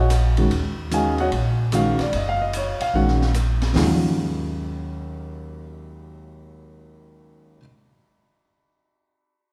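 Set in a wet recital hall with a 1.5-second reverb tail, this brief cut from a longer modal jazz piece feels intense yet cool, swinging in 4/4 over a single Ebm11 chord. An intimate, up-front baby grand piano comps with audible action noise, while a woody pizzicato upright bass on steel strings anchors the low end. An open acoustic drum kit with dark cymbals and a high-tuned snare moves across hi-hat, ride, rim click and toms before dropping out at 3.9 seconds, leaving piano and bass to carry on until about 7.5 seconds.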